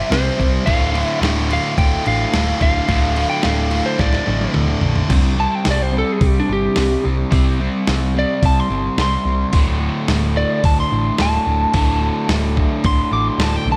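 Big arena sound and a moderate concert hall reverb frame this driving, aggressive hard rock in D minor at 108 BPM, with a gritty, compressed sampler-style drum kit (thumpy kick, medium-tuned snare) and a dark, round, punchy hollow-body bass anchoring the groove. Riffing guitars fill the low end: an overdriven semi-hollow guitar, a double-tracked overdriven guitar with slapback echo sitting in the background, and a bright high-gain distorted guitar that drops out at 5.1 seconds. A slightly broken-up lead guitar with slapback echo carries the melody from the start, and after a drum fill at 4.0 seconds it takes a solo over C5 and D5 power chords through to the end of this cut from a longer piece.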